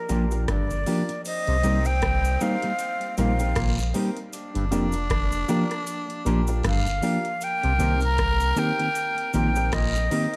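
Studio reverb and a layer of vinyl crackle give this short cut from a longer roots reggae piece a dusty, lived-in sheen, with a serious but laid-back mood and a swung sixteenth-note feel. A breathy concert flute carries the melody up front, close-miked with a straight tone and soft attack, its phrases trailing into dub echo. Beneath it, a round, sine-like sub bass sits deep and forward, while a booming analog drum machine, re-recorded in a large room, supplies a deep kick, metallic hi-hat, rim click and crash. A dark, clean, fingered electric guitar plays accompaniment through spring reverb and dub echo, and in the background a stringy clav riff runs through auto-wah and a combo amp, with a woody upright piano adding stabs and cabasa and guiro faintly shading the groove. At 1.3 s a gritty, raspy tenor saxophone enters with a growling, vibrato-laden second line, also soaked in dub echo, as the harmony moves between Gm7 and Cm7.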